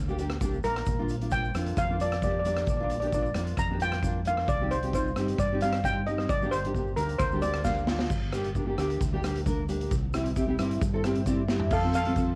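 A straight 4/4 calypso groove at 133 BPM sets a festive, carefree mood in this home recording on cassette, cut from a longer piece. A street-band drum kit sits up front with a boomy kick, medium-tuned snare, rim clicks, toms, hi-hat and dark cymbals in an airy, big-room sound. A round, punchy fingered electric bass anchors the low end, while a grainy tube shaker stays mellow in the background. A double-tracked nylon-string guitar, fingerpicked with fresh strings and audible finger squeak, adds full-bodied accompaniment over changes moving from Gm through Bb and Cm. The close-miked steel pan, metallic and shimmering with hard rubber sticks, carries the melody from 0.6 seconds to 8.1 seconds, where a drum fill leads into a passage built on Gm and C with a guitar fill. The pan returns at 11.7 seconds as the harmony lands on F, all under a light reverb.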